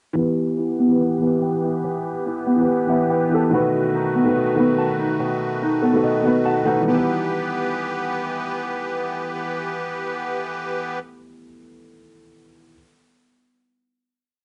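A boxy, dark concert grand piano sits up front with rhythmic open-voiced chords and short fills near 2.7 and 5.6 seconds, looping over a thumb-plucked Celtic harp's ringing eighth-note arpeggios through analog delay and a reedy, shimmering musette accordion pad, all muffled by low-pass filtering and cassette tape in this tense, cold half-time drill beat at 143 BPM in E harmonic minor, where a filter-swept breakdown moves from Em to B7 before settling on a final Em chord at 6.9 seconds.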